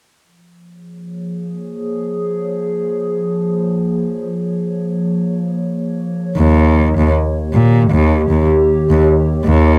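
A bowed cello with vibrato and portamento enters at 6.4 s as the bass, playing expressively with soft attacks beneath a warbling, detuned lo-fi pad that has held mellow sustained chords since 0.9 s, its chorus, phaser and built-in reverb lending a nostalgic haze to this delicate, warm folktronica excerpt at 78 BPM with a gentle 16th-note swing, moving from Bbm7 to Eb7 in a small, lightly reverberant room.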